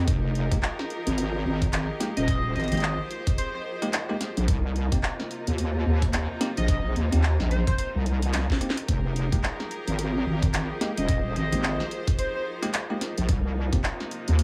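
Glitch hop with a funky, gritty mood, moving at 109 BPM in 4/4 with a 60% swing on the sixteenths and set in F minor, this passage is cut from a longer piece. A heavy, wobbling square-wave bass runs throughout, detuned and compressed with chorus and overdrive, sitting up front alongside a knocking electronic kick that enters at 0.1 seconds. The drum kit brings a cracking snare, bright hats and handclaps, re-recorded in a small room, with a short fill at 8.3 seconds. Underneath, a clear, biting string section holds sustained chords roughened by vintage 12-bit sampler grit and sidechain pumping, while a cloudy, evolving granular pad drifts in the background with its own reverb. Bell-like tine electric piano stabs cut in cleanly with dub echo, and from 2.2 seconds an edgy, tearing sync lead carries the melody with vibrato, chorus and echo. The harmony alternates between Fm11 and Cm7 in a light small-room ambience.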